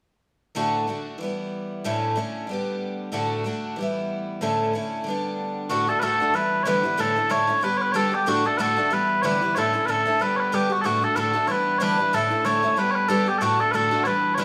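Rollicking and cheerful, this Celtic folk excerpt swings along at 187 BPM in D major, with a bright, shimmering picked twelve-string acoustic guitar cycling through D, Em, A/D and G/D chords from 0.5 seconds, complete with finger squeak, before mellow, sweet small bagpipes join up front at 5.7 seconds to carry the melody in a moderate recital hall reverb.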